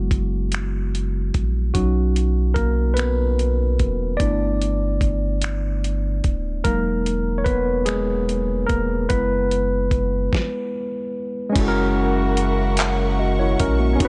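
A worn, slightly out-of-tune tine electric piano carries this tender, slow six-eight R&B excerpt, taking the solo over F#7sus4, Bmaj9, G6 and Emaj9 chords, with a round, deep sine sub bass and a gritty, compressed sampler-style soul kit of thumpy kick, fat snare, hi-hat, snaps, handclaps and crash sitting up front. After a stop from 10.3 to 11.6 seconds, a soft-attack bowed string section with vibrato and a distant, punchy horn section in octave doubling enter on F#7 for the closing phrase. The sound is dry, with a rolled-off top.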